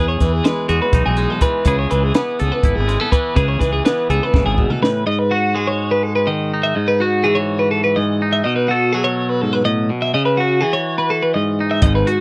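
Intricate and restless, this short cut from a longer math rock and midwest emo piece moves in an odd 7/8 metre with a straight feel. Two picked electric guitars carry it throughout: a twangy accompaniment guitar spanning low to high, and a bright, twangy twelve-string spinning arpeggios in the upper range, both clean, compressed and up front. A fuzz-soaked fingered bass with a growly, overdriven bite and a compact cocktail drum kit, dark and rolled-off with a high-tuned snare and punchy kick, anchor the opening, until a drum fill at 4.3 seconds leads into a second section at 5.1 seconds where the guitars continue alone. The harmony moves from Emaj7 to C#m7, then settles on Emaj9/G#, and bass and drums return briefly at 11.8 seconds. The sound is a dry, close 1970s-style studio recording with little reverb.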